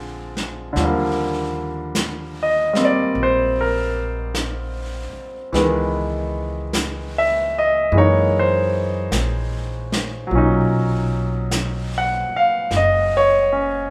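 A tender, intimate jazz ballad with a slow swing, cut from a longer piece and built on lush extended chords such as Ebmaj9, Dbm9 and Gb13. A bright, brilliant concert grand piano sits up front with deep bass and short sustain, carrying the accompaniment over a woody pizzicato upright bass, while a dark, smooth vintage brush kit joins at 0.4 seconds with brushed snare and hi-hat. The trio sounds like a band playing live in one room, bathed in a wet large studio reverb.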